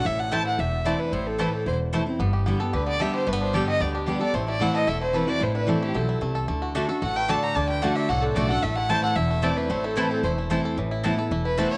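A small room with light reverb frames this haunting, lonesome bluegrass excerpt at 224 BPM in A dorian. A dark, close, bowed fiddle with light vibrato and portamento sits up front beside a full-bodied jumbo steel-string guitar with audible finger squeak, while a twangy, fingerpicked banjo shares the melody. A metallic, nasal slide resonator guitar traces a second line in the background until 10.4 s, a thumpy gut-string upright bass anchors the bottom, and a woody, double-strung mandolin adds stabs that return at 6.7 s, all over chords moving from Am through G and D to a closing Amadd9.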